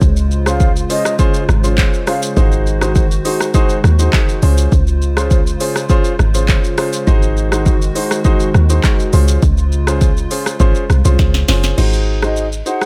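A deep, round log drum bass with a dark, percussive bite sits up front in this breezy, romantic afrobeats excerpt, set against an electronic afro-pop kit of kick, sharp snare, crisp hats, shaker, rim clicks, handclaps and crash cymbal. A polished grand piano plays accompaniment over a soft, hollow pad with chorus, while an airy silver concert flute with vibrato and digital delay carries a brief melody from 0.5 seconds and returns at 12.2 seconds. A drum fill at 11.2 seconds leads into a break, and the dry mix carries little reverb.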